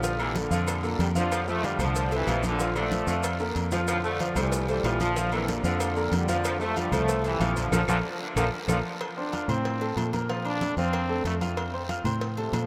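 A straight 4/4 salsa pulse at 187 BPM drives this sunny, festive clip, cut from a longer piece, with congas, a tight high-tuned cowbell, ringing agogo bells and timbales and woody, distant claves all sitting very quietly beneath the band, alongside raspy guiro and grainy maracas. A dark, round fingered electric bass sits up front, while a clear concert grand piano with audible action noise and long sustain carries the accompaniment over Bbmaj7 and F6 chords. A bright, tight trombone section with light vibrato and a slapback echo leads the melody, backed by a vintage-toned saxophone section in the background, and drum fills arrive at 3.4 and 7.7 seconds, the second coinciding with a band accent. At 9.0 seconds a single brilliant, forceful trombone takes a solo with vibrato, punching through as the maracas, claves and horn sections drop away. The whole band sits in a huge, echoing ambient reverb that gives the sound a vast, washed-out space.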